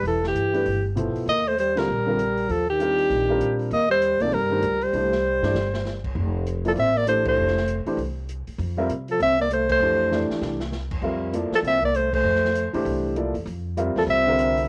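Modal jazz with a searching, open mood and a swinging feel, cut from a longer piece. A soprano saxophone carries the melody up front with light vibrato, subtone and scooped notes, while a breathy, mellow trombone plays a soft-attack second line; both have a cassette tape character and plate reverb. Woody pizzicato upright bass and a dark, boomy-kicked drum kit with dark cymbals and a rolled-off top anchor the band, a natural-sounding grand piano accompanies from 0.5 s on chords moving from Cmaj7 to Fmaj9 at 6.2 s, and the band hits accents and the drums play short fills at 5.2 and 10.1 s in a small, home-recorded room.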